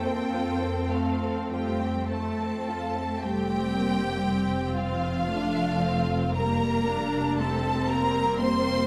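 This is a slow, romantic classical movement for string orchestra in 3/4, cut from a longer piece, with a melancholic, elegiac mood and a rubato feel. A lush, close violin section carries the high melody with expressive vibrato. A second, more distant violin section plays a supporting line beneath it. A smooth, even viola section holds the accompaniment, sitting slightly forward in the blend. Underneath, a cello section in the background adds soft attacks and portamento, while a focused double bass section anchors the low end, and all five sections play bowed together from start to finish. The strings sit in the ample reverb of a scoring stage, and the music moves into a new section at 3.2 seconds.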